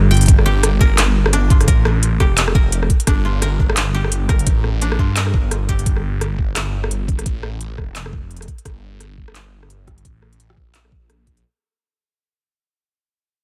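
A swirling, thick detuned saw bass with phaser sits up front in this tense, cinematic half-time drum and bass passage in G minor at 172 BPM, its saturated unison tone anchoring the low end beneath a gritty, thumpy, pitched-down electronic kick. A dry, woody koto played with fingerpicks spins arpeggios through a digital delay until 7.7 s, while a crisp, tape-toned electronic kit of handclaps, hi-hat and rim click rides a 58% sixteenth-note swing. The mix is close and barely reverberant, and this section of a longer piece fades out from 0.3 s to its end at 11.4 s.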